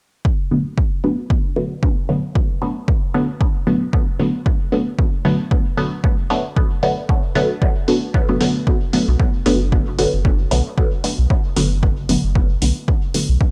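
A punchy, overdriven electronic kick sits up front at 114 BPM in 4/4 with a light 16th-note swing, joined by a gritty, low-pass filtered hi-hat in this deep, hypnotic dub techno cut in B minor. A muted, detuned sawtooth-and-square chord stab on Bm7 pumps against the kick, smeared by phaser and dub echo as its filtered pluck evolves. At 9.1 seconds a clean, smooth sine sub bass enters underneath, also pumping, all captured in a dry hardware recording with transformer saturation and cassette tape grit.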